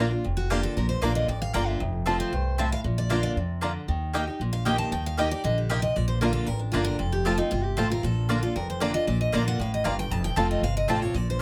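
A straight 4/4 pulse at 231 BPM drives this joyful bluegrass excerpt in Bb major, moving through Bb, F and Eb chords, with a thumpy, gut-strung upright bass up front beneath a full-bodied jumbo acoustic guitar's picked accompaniment and a double-strung mandolin's stabs, while a boxy parlour guitar with audible finger squeak carries the melody up front from 0.4 seconds and a twangy, fingerpicked banjo adds its own melody in the background until 10.9 seconds, captured through close, detailed microphones with light reverb.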